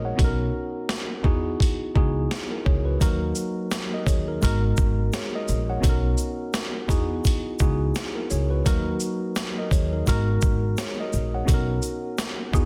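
A gritty, sampler-style boom-bap drum kit sits up front and enters at 0.2 seconds, its compressed hits built around a thumpy kick, a high-tuned snare, hi-hat and shaker, all carrying the sound of being re-recorded in a large room. The groove moves at 85 BPM in 4/4 with a 58% swing on the sixteenths, giving this tough, gritty hip-hop fragment a swung bounce. Underneath, a pizzicato upright bass with steel strings plays from the start, sounding woody, dark and thumpy in its low register. A worn, slightly out-of-tune tine electric piano, clean and direct, sits close in the mix with a cassette-tape character and filtering that trims both its low and high ends. It cycles through Bmaj7, Emaj9, Ebm and Abm9. From 3.0 seconds, a tube shaker and woodblock with a group handclap add small-room acoustic texture in the background, and the whole piece carries little reverb and a dense, heavily limited modern master before it cuts off at 12.7 seconds.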